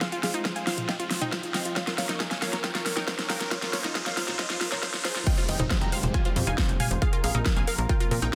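A dense, heavily limited modern mix sits in a moderate, lush hall, carrying this short, emotional and soaring stretch of uplifting trance in a straight four. A bright, detuned unison pluck with a wave-folded edge carries the melody through tape echo, while a second, warbling vintage pluck spins arpeggios in the background and a thick, chorused pad holds sustained chords beneath them, all three pumping against the kick. For the first 5.3 seconds the track builds: the overdriven big-room kit plays a drum fill with a huge snare, metallic hats, toms and crash, a riser climbs in the background and a filter sweep moves across the lead pluck. The punchy, up-front kick drives until 8.0 seconds, and at the drop at 5.3 seconds the harmony shifts from the opening minor chords to added-ninth and suspended colours. A tight, nasal sequencer bass of sawtooth and square waves enters at 5.5 seconds, pumping with the kick and pushing the drop forward.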